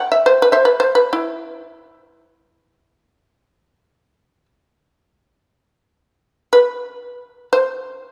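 Japanese traditional chamber music in free time, this austere, solitary 8.1-second fragment of a longer piece features a lone fretless shamisen, plectrum-plucked with a percussive, buzzing bite and placed up front between E4 and F#5, its phrase heard twice and carried by a moderate concert-hall reverb.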